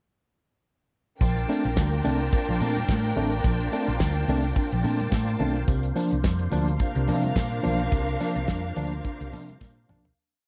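A danceable, celebratory disco piece in Bb major at 107 BPM opens at 1.2 seconds with nearly the full band together: a damped 70s drum kit with a fat snare and tight kick playing a four-on-the-floor beat with open hats on the off-beats, a round, punchy hollow-body bass weaving a syncopated line with slides and chromatic approach notes, a worn, slightly out-of-tune tine electric piano adding a lightly overdriven percussive groove, a gritty tonewheel organ holding sustained chords through chorus vibrato and a slow rotary speaker, a lush symphonic string section swelling on long notes, and a jingly tambourine on the backbeat, with a very quiet conga groove joining at 1.4 seconds. All move from Bbmaj7 to C9sus4 at 5.7 seconds before fading out from 7.9 seconds, with a closing drum fill arriving at 9.6 seconds.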